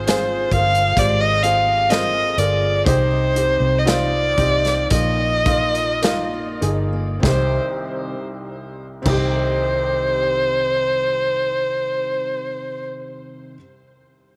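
A slow, straight 4/4 pulse between 49 and 67 BPM carries this longing, melancholic pop ballad in C minor, easing its pace over the opening 7.2 seconds as the harmony moves from F minor through C minor to a suspended B-flat chord before settling back on C minor. Up front, a single bowed violin sings the melody with a dark, woody tone, a smooth top and gentle vibrato, trailed by a tape echo. Beneath it, a felt-muted upright piano supplies soft, mellow, intimate accompaniment with a short sustain, while a fingerpicked steel-string dreadnought guitar spins full-bodied arpeggios in the background, with faint finger squeak. A vintage fingered electric bass, foam-muted and amped, keeps a round, low line. A natural country drum kit, airy and polished in a studio room with a medium-tuned snare, punchy kick, hi-hat and crash, drops away at 9.4 seconds, and light reverb with a small room ambience wraps this fragment of a longer piece until the piano's final notes at 14.4 seconds.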